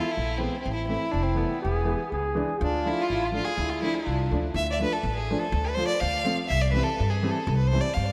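A warm, bowed violin carries the melody from the opening, up front with vibrato, a smooth, even tone and a touch of tape echo, while a clear, vintage-toned trombone plays a second line that stops at 4.5 seconds and a dark, mellow upright piano with audible action noise supplies accompaniment. This festive, soulful klezmer fragment moves at 123 BPM in a straight 2/4 over D dorian sharp4, with a growly, woody pizzicato upright bass entering at 0.2 seconds and chords moving from E through Am and Dm to C. A lush hall reverb soaks the whole mix in a dreamy wash, and the passage shifts into a new section at 4.6 seconds before it cuts off at 8.1 seconds.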